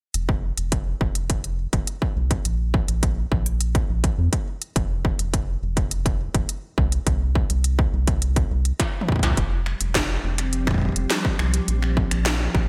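A straight 4/4 groove at 104 BPM drives this glitchy, wistful IDM excerpt, where a distorted electronic kick and an industrial kit of finger snaps, smooth hi-hat, clanging gated-reverb snare and toms sit up front over a rubbery, nasal square-wave bass moving through F and Bb chords, until a drum fill at 8.8 seconds ushers in an ethereal, glassy FM pad with chorus and phaser at 9.7 seconds, set in a bright 1980s-style digital production.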